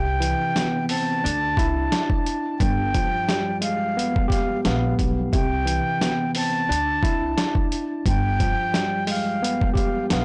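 A blown-out, overdriven recording with light reverb and a dull top end frames this reflective, gritty boom-bap hip-hop excerpt at 88 BPM, swung lightly on the sixteenths and moving through Cmaj7, Dsus2 and G7b9. A breathy, close-miked concert flute carries the melody up front with a soft attack and tape echo, over a worn, slightly out-of-tune tine electric piano that sounds lightly overdriven through built-in speakers and cassette tape. A woody pizzicato upright bass with tube saturation anchors the low end, and a dusty, compressed sampler-style drum kit with a thumpy kick, medium-tuned snare and hi-hat enters at 0.2 seconds, overdriven and re-recorded in a small room.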